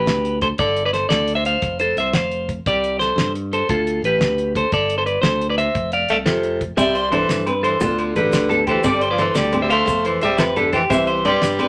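A clean, twangy electric guitar melody opens this sunny, danceable highlife groove in 12/8 at 116 BPM in C major, over punchy, bright fingered bass and a damped 70s kit with a fat snare and tight kick, before a growling, raspy tenor saxophone adds a second line at 6.1 s and, from 6.8 s, a dark fingerpicked flamenco guitar, a slightly broken-up electric guitar playing arpeggios through a small old amp, ringing agogo bells and grainy maracas fill out the moderate studio ambience over chords moving through Gsus2, F, Cadd9 and Dm.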